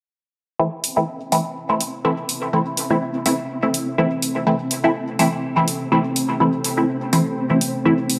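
Dub techno at 124 BPM in A minor, this hazy, meditative passage is cut from a longer piece and rests on a single A minor chord throughout, with a gentle 16th-note swing. A muted, detuned chord stab sits up front from 0.6 seconds, its filter pluck decaying into a phaser and dub echo. A dark, layered electronic hi-hat enters at 0.8 seconds, also up front and touched by small room reverb. A flickering, grainy texture hovers mellow in the background from 0.9 seconds, and at 1.9 seconds a deep, warbling ambient pad fades in with sustained chords, a sub octave, chorus and its own reverb. A lush hall reverb of moderate size wraps the whole mix in a moody haze.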